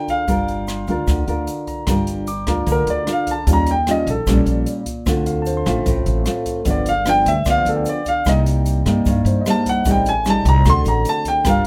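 Melancholic and smooth, this bossa nova in G minor moves at 150 BPM in a straight 4/4, cut from a longer piece and tuned slightly sharp to A4 = 445 Hz. A warm baby grand piano carries the melody up front with an open, long-sustaining tone, turning to a solo at 1.9 seconds that runs to the end. Beneath it, a dark, thumb-plucked nylon-string guitar supplies classical-style accompaniment, while a woody pizzicato upright bass on steel strings anchors the low end. An airy, polished jazz kit with a boomy kick, hi-hat and rim click sits in a small room, and a grainy, very quiet egg shaker sounds from a distance. From 0.7 to 10.1 seconds, a barky tine electric piano, lightly overdriven through a combo amp, adds bright touches in the background as the harmony moves from Gm7 through Eb9, Dm7, G7 and Cm7 to Am7b5 and D7, all in a dry mix with little reverb.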